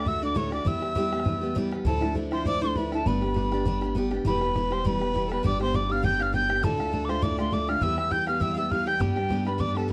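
A mellow, hollow wooden whistle with tongued chiff and vibrato carries the melody of this spirited, driving Celtic reel at 201 BPM in D dorian, over a nasal, earthy fiddle second line, bright picked steel-string acoustic guitar up front, woody pizzicato upright bass and a boomy bodhran in the background, all in a dry, close 1970s-style studio sound with small room reverb.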